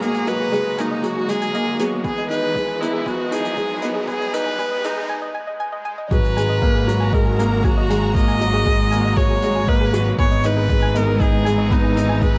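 A rich, smooth solo viola sings the melody up front with vibrato and digital delay in this intimate, hypnotic piano and strings electronica excerpt, over a felt-muted upright piano riff, a lush bowed string section holding background chords, and an earthy bowed double bass section, both bass and strings pumping with sidechain. A soft, round pluck adds dark, chorused arpeggios with delay, while a brushed hi-hat sits far back and an overdriven, deep electronic kick enters at 2.0 s. A background electronic riser builds until a break at 5.1 s, where a swell carries into the drop at 6.1 s, all within a dark production and a small-room reverb.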